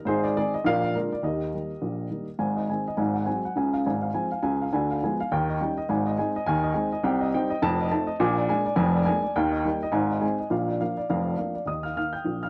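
A dark, woody upright piano plays solo stride jazz with an exuberant, swinging lilt, its mellow tone sitting up front in a dry, intimate, close 1970s-style studio sound where the instrument's action noise is audible, in a brief fragment cut from a longer piece.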